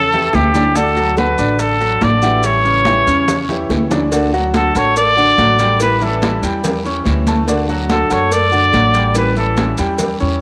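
Relaxed and warm, this excerpt from a longer Cuban son and guajira piece moves at 143 BPM in D major, alternating between A7 and D as a punchy, vintage-toned trumpet sings the melody up front with vibrato. Beneath it, a bright baby grand piano rolls out arpeggios with audible action noise and long sustain, an upright bass with gut strings gives a woody, thumpy pizzicato bottom, and a fingerpicked flamenco guitar adds accompaniment from 0.3 s. Ringing high-tuned congas and a raspy guiro sit in the background, joined by tight, very quiet bongos and cowbell and grainy maracas. A drum fill at 3.7 s leads into the second section, and a moderate plate reverb surrounds the band.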